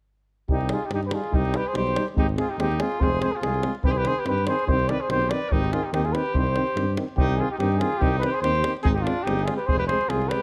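Balkan folk brass band in C harmonic minor at 144 BPM in a swung 2/4, restless and virtuosic, where a dark, up-front trumpet with light vibrato carries the melody over a distant, roomy bright trumpet's second line, a clear French horn and warm, vintage euphonium accompanying in the background, a mellow close-miked tuba on bass and a tight, dry davul, all with light reverb, close detailed microphones and a faint mains hum in this short cut from a longer piece.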